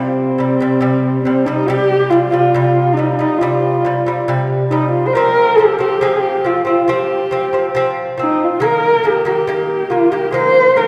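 In a straight, unhurried 4/4 at 69 BPM, this vast, windswept Mongolian traditional excerpt in C yu mode sets a dark, husky horsehead fiddle, bowed on horsehair strings by one player with vibrato and portamento, singing a woody melody over delicate fingerpicked arpeggios from a gut-strung lute with doubled strings, both up front in a wet concert hall reverb as the harmony moves from C to F at 5.1 seconds and Eb at 8.6 seconds.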